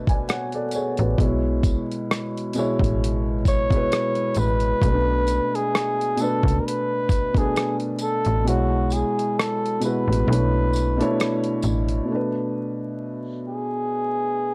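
Swung sixteenths in 4/4 carry this melancholic, hazy lo-fi hip hop fragment, built on an overdriven, compressed sampler-style kit of hi-hat, thumpy kick and rim click, with the kick dropping out from 8.5 to 12.1 seconds, when the drums stop. A snappy FM bass with a metallic, decaying attack sits up front beside a soft, felt-muted upright piano playing intimate chords, while a jingly tambourine stays in the background and a mellow, jazz-style flugelhorn takes the solo melody from 3.5 seconds. The sound is dry and gritty throughout, with transformer saturation and vinyl crackle, and the fragment ends on a brief closing section.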